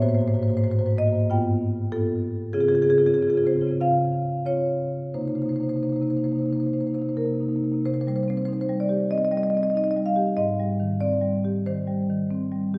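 This is a contemporary classical piece for solo marimba, a short fragment cut from a longer work, with a flowing, warm mood and a rubato feel in 4/4. The marimba, played with medium hard mallets on rosewood bars, has a woody, dark and smooth tone, ranging from G2 up to G5 and sitting up front in the sound. A wet concert hall reverb surrounds it, and the listener seems placed further back in the room, so each note rings into a long, enveloping decay. The opening section moves through rich, colorful harmonies, Ab9, G9, Dbmaj7 and Cm7. At 7.8 s a second section begins, settling on C minor before shifting to Abmaj7 through to the end at 12.8 s.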